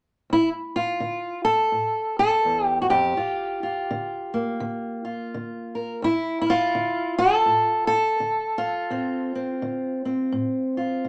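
A fingerpicked steel-string acoustic guitar opens at 0.3 s, playing alone in a soulful, mournful acoustic country blues at 84 BPM in 4/4 with a lilting swing. Its boxy, up-front tone carries audible finger squeaks as it moves through Dm, Gm7 and Dm7 in D minor, spanning from low D2 up to Bb4. A moderate studio ambience surrounds the guitar in this short excerpt, which ends at 11.1 s.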